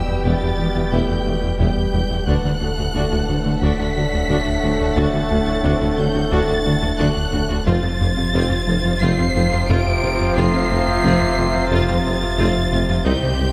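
A straight 4/4 pulse at 89 BPM drives this tense, brooding hybrid orchestral and electronic film score excerpt, where lush, vibrato-rich violins carry a high, expressive melody over a second violin line, focused violas in the background, clear vintage-toned trombones and mellow French horns holding sustained chords, a round sawtooth-and-sine analog bass riff, a punchy sub bass with a pitch-drop attack, distant, very quiet cellos and double basses, a soft-edged tuba, and a felt-muted upright piano adding intimate texture with audible action noise, all moving through Em, D and F in a moderate scoring-stage reverb.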